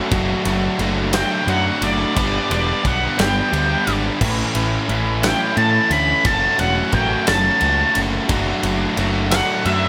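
A straight 6/8 pulse at 59 BPM in dotted quarters drives this restless, cathartic stretch of quiet-loud alternative rock, cut from a longer piece, with the chords moving through D/F#, G, A and F#m. A growling, overdriven picked bass sits up front over a punchy acoustic kit of kick, medium-tuned snare, crash and ride, while three background riff guitars fill out the wall: a bright, double-tracked overdriven guitar and a pair of thick fuzz guitars, one dark and one gleaming. From 1.1 seconds a shadowy octave-fuzz lead guitar sings a high melody between D5 and B5, all set in a light studio reverb.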